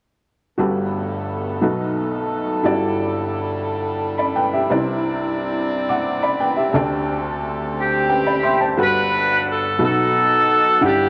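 A reverent, hopeful gospel piece in 6/8 opens at 0.6 s with a woody, slightly detuned upright piano and a muted, nasal French horn section holding soft, sustained chords; a clear, vintage saxophone section with vibrato takes up the melody at 7.8 s, and the horns fall away at 8.8 s, leaving piano and saxophones up front in a wet spring reverb.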